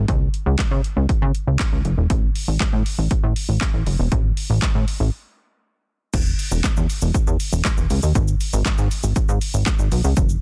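A straight 4/4 pulse at 119 BPM drives this bittersweet yet confident dance-pop excerpt, tuned to A4 = 436 Hz, with a layered electronic house drum kit sitting up front from 0.1 s: a hard-hitting kick and snare, tape-warm hi-hats, handclaps, shaker and crash cymbal. Alongside it, a funky, plucky analog bass ranging from E1 to C#3 sits equally up front from 0.0 s, blending sawtooth, square and sine tones with ring modulation and wave-folding, its fast-attack filter pluck decaying and pumping from sidechain compression. After a break from 5.1 to 6.1 s a new section begins, and the dry, dense mix stays heavily limited throughout.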